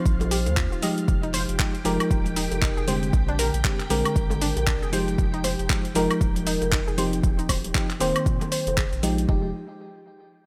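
Deep and moody, this deep house excerpt at 117 BPM in F dorian rides a swung groove as a mellow, up-front FM electric piano plays dark chorused stabs with delay and sidechain pumping over Eb69, Fm9 and Bb13 chords, joined by a silky string machine in the background, a round analog bass, an overdriven kick and kit of handclaps, hi-hat, shaker and woodblock, very quiet vintage congas and bongos, and a warbly, lo-fi dusty pluck playing arpeggios, all in a dry mix.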